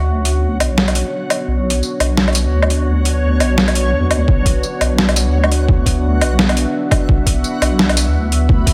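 A swung, half-time drum and bass groove in 4/4 drives this spacious, heavy build-up, cut from a longer piece and resting on a single B minor add9 chord. A deep, dark ambient pad holds sustained chords from the start, its sawtooth-and-sine unison with a sub octave giving a moody, mellow body, softened by chorus and built-in reverb and pumping against a sidechain. Underneath, a deep, soft wobble bass built from detuned square and sine tones sits up front, wobbling and compressed with chorus, while a reversed, swelling granular texture floats in a higher register, quiet, dreamy and bright in its own reverb. At 0.3 seconds a gritty, pitched-down boom bap sampler-style kit arrives with hi-hat, a medium-tuned snare, tambourine and woodblock, overdriven and compressed. At 4.3 seconds a thumpy, overdriven electronic kick joins up front, thickening the low end as the passage builds under a light digital ambience.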